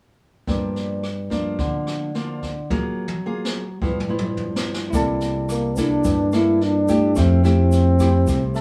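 Fingerpicked nylon-string guitar and a distant, roomy brush kit with a high-tuned snare and boomy kick open this sunny, breezy bossa nova excerpt in a small room, the drums rolling into a fill before a round, amped electric bass, a bell-like, barky electric piano and a grainy shaker in the background join at 4.9 seconds, and a dark, forceful trombone takes an up-front jazz solo with light vibrato from 5.5 seconds over chords moving from Gm7 to Fmaj9.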